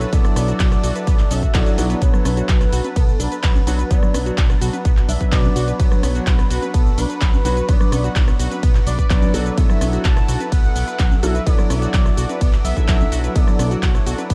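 Emotional and driving, this progressive house excerpt moves in a straight 4/4 feel, built around a punchy, layered electronic kick that sits up front in a dark, warm production. A fat, detuned sawtooth bass holds a single low note, saturated and pumping against the kick, while an analog pluck spins bright, round arpeggios through chorus and dub echo. A concert grand piano adds intimate stabs with audible action noise, also caught in the sidechain pumping and dub echo, and a smooth, nasal synth lead carries the melody with vibrato, chorus and dub echo. Behind them, a shimmering, ethereal pad sustains chords with an octave-up granular sheen, and a big-room drum kit layers cabasa, handclaps, hi-hat, ride cymbal and rim click. Tape-toned congas join at 2.1 seconds, tucked into the background, as the harmony moves from Dadd9/B to Bm and returns to Dadd9/B at 9.6 seconds.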